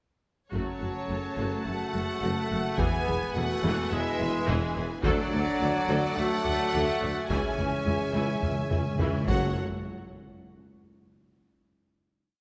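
Dramatic and epic, this cinematic orchestral cue sets lush, vibrato-rich violins carrying the melody over a second violin line of sustained chords, while intense violas and close cellos drive ostinatos above bowed double basses and a warm tuba doubling the bass, with dark, distant French horns, clear trumpet stabs and punchy, very quiet trombone chords filling out the brass, heavy taiko pounding a big, dry drum ostinato throughout, and round timpani rolls entering at 7.3 s before a final hit at 9.6 s, all bathed in a concert hall reverb.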